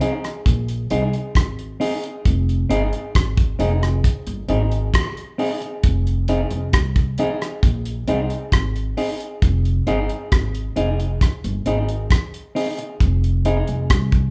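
Hypnotic and laid-back, this roots reggae passage, cut from a longer piece, rests on a single Fm7 chord in a straight four-beat feel. A damped 70s drum kit sits up front from the start, its dry, acoustic sound built from hi-hat, rim click and a tight kick. The upright bass enters at 0.5 seconds, a woody, thumpy pizzicato line on steel strings, dark in tone and placed up front in the low register. A semi-hollow electric guitar plays a clean, fingered accompaniment with a hollow-body character, its shadowy sound coloured by spring reverb and slapback echo, and it drops out at 13.6 seconds while drums and bass carry on. The band sounds as if playing live together in one room, with a light reverb around them.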